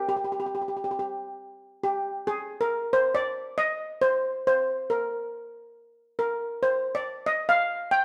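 A shimmering lead steel pan, struck with medium rubber sticks and placed up front, plays alone from 0.0 to 8.0 seconds across G4 to G5 in this sunny, bouncy calypso snippet at 138 BPM, its metallic ring carried by a moderate stone-room reverb in a live one-room recording.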